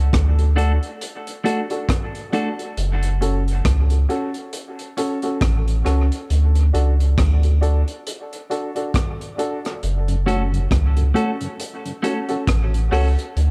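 Spacious and meditative, this dub reggae excerpt moves at 68 BPM in F# minor with a swung 16th-note feel. It is anchored by a round, up-front sine sub bass and a gritty, saturated breakbeat kit of kick, hi-hat and rim click, with a punchy yet dark sound. A worn, woody, slightly detuned upright piano plays stabs through a high-pass filter and dub echo, while a bright, twangy clean electric guitar with spring reverb and dub echo appears briefly near the start and returns at 10.3 s. The chords shift between D and F# minor in a small, echo-heavy room, and a mellow tonewheel organ with key click and slow rotary speaker slips in very quietly at 10.1 s, just after the break ends.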